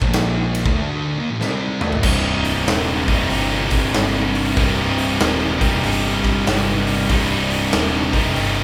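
Hypnotic and heavy, this short cut from a longer stoner and doom metal piece moves at 95 BPM in 4/4 with a swung eighth-note feel in C dorian. Two thick fuzz guitars sit in the background playing a riff throughout, alongside a fuzzy, overdriven picked electric bass that plays with a warm, amped tone. A big rock drum kit, acoustic and natural with bright cymbals, a medium-tuned snare and a punchy kick, sits up front using crash, hi-hat, ride and toms. After an opening on Bb5 and A5 power chords, a break arrives at 0.8 seconds, with a drum fill leading to 2.0 seconds, where a bright, double-tracked overdriven electric guitar enters up front as the music settles on C minor. The band sounds as if playing live in one room, wrapped in a moderate large studio reverb.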